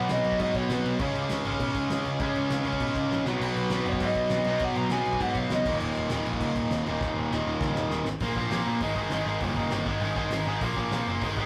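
Angry and aggressive, this punk rock excerpt charges along at 200 BPM in Eb minor, with two bright, up-front distorted electric guitars hammering out the riff, one overdriven and the other compressed and scooped, over a growling, punchy overdriven bass and a loose acoustic drum kit with a fat snare, punchy kick and dark cymbals in a pumping room. A crunchy overdriven lead guitar picks out a melody in brief bursts, stopping at 0.9 seconds and returning from 3.4 to 5.7 seconds, while a drum fill marks the turn into a new section at 8.2 seconds that moves through Bb5, Ab5 and Ebm/Gb chords. The rough rehearsal-room recording carries saturation and a wet studio ambience.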